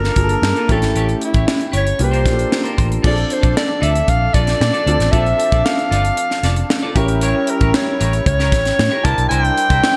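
A straight 4/4 groove drives this short cut of polished 1980s jazz-funk pop, breezy and urban in mood. An up-front funk drum kit with bright cymbals, a high-tuned snare and a tight kick has its small-room sound enlarged by gated reverb, while a dark, round, foam-muted fingered bass holds down the low end. A mellow, breathy soprano saxophone carries the melody with a smooth, jazz-styled top over an intimate grand piano, whose boxy tone, audible action noise and long sustain are dressed in lush chorus. Further back, a clean, picked semi-hollow electric guitar plays a riff with subtle chorus, and from 3.0 seconds a horn section with light vibrato adds a second line through digital delay. The harmony moves from Gm9 and A7 to C7sus4, then to Bbmaj7 before A7b9 and C7, set in 1980s-style digital production with light studio reverb.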